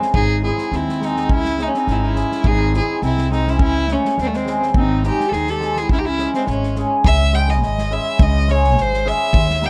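A dark production with light reverb frames this bittersweet, virtuosic Balkan wedding-band excerpt in C# Hungarian minor, moving at 104 BPM in 2/4 with a gentle sixteenth-note swing over alternating G# and C#m chords. A rich, smooth bowed violin with vibrato carries the melody up front, bathed in plate reverb, while a bright, classical-style clarinet with tape echo adds a second line until 6.9 s. Underneath, a shimmering, ringing cimbalom accompanies, a woody, thumpy pizzicato upright bass on gut strings sits forward in the mix, and an acoustic kit played with bundle sticks supplies a punchy kick and medium-tuned snare as the music moves into a new section at 7.0 s.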